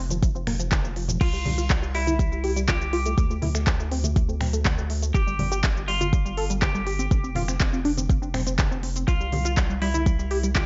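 A dry, dark-topped mix opens this hopeful, euphoric progressive house excerpt, where a tight, detuned sawtooth synth arpeggio with phaser, chorus and tape echo sweeps through a filter over a round, sustained analog bass and an up-front deep electronic kick, with a big-room dance kit of crisp hats, handclaps, finger snaps, shaker and crash, ringing congas set back in the mix, and a clean, picked semi-hollow electric guitar entering at 1.2 s to carry the melody over chords moving from Csus4 through D5, G7(no3) and F5, with sidechain pumping on the synth, bass, congas and guitar.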